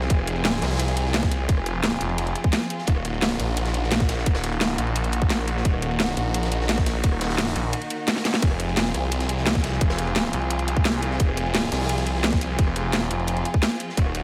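Mechanical and tense, this is a cut from a longer piece of dark technical drum and bass at 173 BPM in a straight 4/4, sitting in F phrygian with the tuning set to A4 = 436 Hz. A snarling distorted saw bass is present from the start, growling and up front with a detuned sawtooth unison edge, a moving notch and sidechain pumping. Beneath it, a rich studio string section holds bowed, vibrato-laden chords, smooth and even, also pumping to the sidechain as the harmony moves from Fm to Ebm at 2.9 seconds and back to Fm at 8.4 seconds. The drums are layered: a tight, overdriven electronic kick and a produced kit with a cracking snare, rim clicks and bright hats arrive at 0.1 seconds, while a gritty, saturated breakbeat kit with dark cymbals and a rolled-off top sits in the background, filtered thin. A drum fill at 8.2 seconds marks the turn back to the home chord, and a light small-room reverb gives the mix a close, confined feel.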